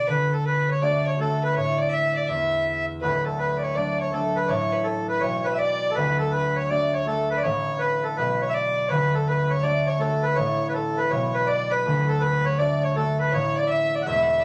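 A rollicking, cheerful Celtic hornpipe opens with all three parts at once: a reedy, hollow accordion carries the melody up front, a bowed fiddle with a biting, earthy edge traces a second line further back, and a fingerpicked concert harp rings out beneath them from deep in the bass. At 163 BPM in 4/4 with a swung eighth-note feel, the harmony alternates between a D chord and open, chordless stretches roughly every second and a half. The tuning sits at A4 = 438 Hz, and a club ambience with a short tail surrounds the players in this 14.4-second cut from a longer piece.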